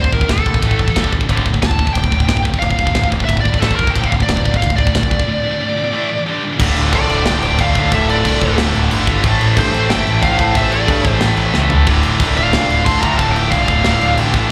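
Heavy metal, relentless and dark, cut from a longer piece and heard as a live gig through a club PA, where a warm, distorted high-gain lead guitar carries the melody over two bright high-gain rhythm guitars (one scooped) with slapback echo, a punchy, growling overdriven bass and an up-front, tight drum kit with bright cymbals, until a break at 5.3 seconds drops into a half-time passage at 6.6 seconds that adds a dark, double-tracked overdriven guitar riff, joined at 6.9 seconds by a dark second lead line set in the background, with a drum fill at 11.5 seconds.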